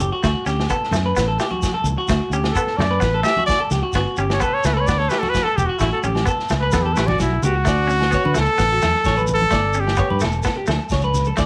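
Highlife guitar band in D major at 129 BPM, carefree and joyful, with a slightly broken-up, twangy electric guitar playing arpeggios with slapback echo over a round, dark fingered bass, a bright, clean semi-hollow guitar accompaniment and a punchy vintage drum kit with a pumping small-room sound. Shekere, ringing agogo bells in the background and very quiet soft-handed congas from 0.9 s fill out the percussion as the harmony moves from D through G and A. A clear, up-front trumpet with light vibrato and its own slapback echo enters at 2.5 s to carry the solo melody until 10.2 s, all within light reverb in this short cut from a longer piece.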